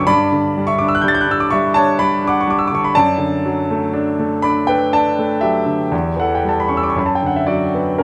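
A G5 chord on a concert grand opens this brief fragment of a mournful, wistful Romantic nocturne in three-four time, played with a rubato feel. The solo piano moves through D/F# at 3.0 seconds, C#dim/E at 5.9 seconds and Bm/F# at 7.0 seconds, spanning E2 to A6 with deep bass and long sustain. Its tone is clear and polished, placed up front and intimate with audible action noise, inside a moderate large-studio reverb.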